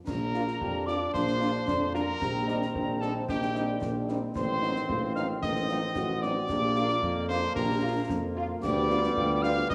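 A festive, proud military-style march for wind band in Bb major at 112 BPM opens at 0.1 seconds with a vibrato-tinged cornet carrying the melody in a classical style, a pure, hollow piccolo on a high second line, a smooth-topped tuba up front on the bass, mellow trombones holding sustained chords and a concert snare, bass drum and dark clash cymbals marking the 2/4 step. A French horn section slips in behind with accompaniment just after, and a distant, roomy euphonium adds a further warm second line from 0.6 seconds. The band sits in a wet recital hall reverb over small room ambience, and the short excerpt moves through chords such as Cm7/Bb and Adim7 before landing on G7/D.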